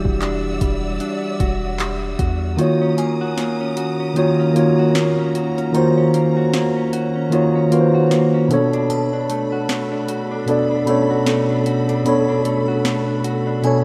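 Bathed in a lush hall reverb with a rough demo-mix feel, this moody, late-night contemporary R&B piece is carried by a mellow, up-front tine electric piano that takes a solo over a deep, sine-like 808-style bass until 2.6 seconds, when the bass stops and the kick drops out of the overdriven, small-room electronic drum kit of sharp snare, handclaps and hi-hat, while distant bowed strings with expressive vibrato and portamento hold sustained chords, a clean, compressed direct guitar picks delayed arpeggios, and a glassy, crystalline FM synth bell with chorus and delay shimmers in the background from 3.0 seconds.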